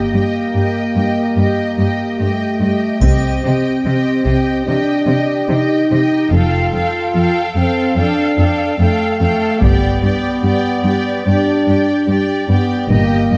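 Bathed in a wet scoring-stage reverb, this dark, dramatic excerpt of epic orchestral film score sets a rich violin section singing a melody on G5 above a distant, portamento-laden second violin line, lush violas, mellow French horns holding chords and a foundation of focused, up-front cellos with soft-attacked double basses, while heavy-stick taiko drums enter at 3.0 and 9.6 seconds, the first time joined by a bright triangle.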